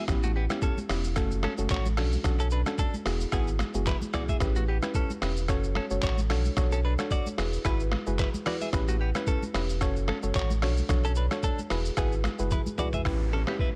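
Hypnotic and mellow, this afrobeats groove has a lightly swung sixteenth-note feel and cycles through the same four chords, A7, F#m, Bm7 and Eadd9, across its 13 seconds. Its cut from a longer piece. Up front, a sine-and-triangle sub bass with an added octave sits deep and full, alongside a compressed, pitched-down trip hop sampler-style kit whose thumpy kick, muffled snaps, handclaps, hi-hat, rim click, shaker and toms give it a sampled character. A soft, round, dark pluck layered with a noise texture plays the accompaniment through chorus and a filter sweep. A twangy, bright clean electric guitar, recorded direct and picked, carries the riff with vibrato and delay. Thin-skinned congas played with soft hands sit close and dry in the background. A drum fill arrives at 12.5 seconds, and at 13.1 seconds the hi-hats drop out as a faint electronic downlifter closes the passage, all within a digital ambience.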